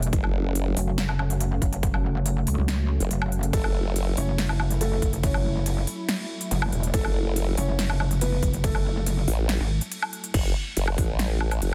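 A half-time groove in 4/4 drives this heavy, chaotic wobble dubstep drop, cut from a longer piece, with a punchy overdriven electronic kick and a big-room dance kit of crisp hi-hats, a punchy snare, crash cymbal and woodblock, both soaked in studio reverb. Two up-front wobble basses dominate the low end: a pulsing, detuned, saturated pluck bass with chorus and overdrive, and a formant-sweep wobble bass built from sawtooth and sine tones that drops out briefly and returns at 6.9 s. Underneath, a lush supersaw pad holds sustained chords, pumping against the sidechain and dulled by a low-pass filter. At 3.5 s a soft, felt-muted upright piano adds an intimate melody through digital delay, its action noise audible beneath the din. After a short break near 9.9 s, a deep, dark ambient pad surfaces very quietly at 10.6 s, all inside a dense, heavily limited modern master.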